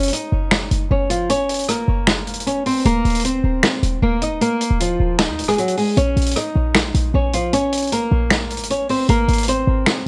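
A fingerpicked acoustic flamenco guitar leads this menacing, melancholic trap excerpt in Bb minor at 154 BPM, its warm, up-front melody softened by a low-pass filter and trailed by digital delay, reaching Eb5 at 2.9 s. Beneath it, a punchy, tight 808-style bass of sine tone with a noise layer hits with a fast attack and short decay. An acoustic vintage kit with a natural studio-room sound and rolled-off top sets the half-time feel with finger snaps, hi-hat, rim clicks and a medium-tuned snare, as the harmony moves from Gb to Bbm at 6.0 s and Abadd9 near the end, all in light reverb.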